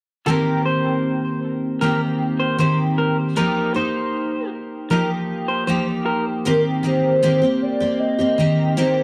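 A straight 4/4 pulse at 78 BPM carries this mellow, hazy indie pop excerpt, where a full-bodied picked steel-string acoustic guitar with analog chorus and vibrato sits up front, moving from Eb6 to F9sus4 and back to Eb6. A slightly broken-up, lo-fi electric guitar through a small old amp adds a fingered second line with subtle chorus and tape echo until 6.2 seconds, and at 6.5 seconds a hollow, woody clarinet-like synth lead takes the melody with a soft attack, sustained notes and lush chorus. The dry, close 1970s-style studio sound has light reverb and small room ambience.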